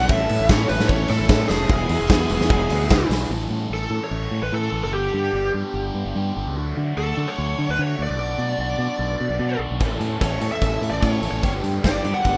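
Carefree yet wistful, this indie rock excerpt in A mixolydian moves at 148 BPM, with a dark, distorted lead guitar carrying the melody up front through digital delay over a bright, fingered electric bass and a biting overdriven rhythm guitar riffing through phaser. For the opening 3.3 seconds a very quiet, vintage organ-like string pad holds soft sustained chords while a jingly tambourine rattles faintly, and a big rock kit with punchy kick and medium-tuned snare drives the band alongside a background overdriven guitar riff that carries chorus and delay; the kit and that guitar both drop out, then return together at 9.8 seconds. The rough home demo mix sits in a small room, with chords moving from Aadd9 and Eadd9 into a cycle of A, G, D and Bm.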